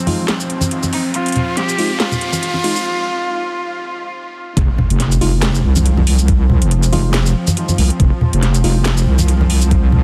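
A dense, heavily limited modern mix with a light reverb opens this cavernous, heavy slice of deep dubstep in F minor, moving at 140 BPM with a swung, half-time feel. A rich, boxy cello carries the melody with light vibrato through a low-pass filter and dub echo until 4.1 s, over a tense, nasal bowed-like drone holding sustained chords in its own reverb. A tine electric piano adds clean stabs with medium tremolo, set in the background through a combo amp, while a riser builds toward a short break. Throughout, close acoustic congas and a tape-warm garage kit of cracking snare, metallic hats, handclaps and shaker keep the groove. At 4.6 s the drop lands with an electronic impact, as a saturated, square-and-sine wobble bass with chorus and a knocking electronic kick push up front to dominate the low end.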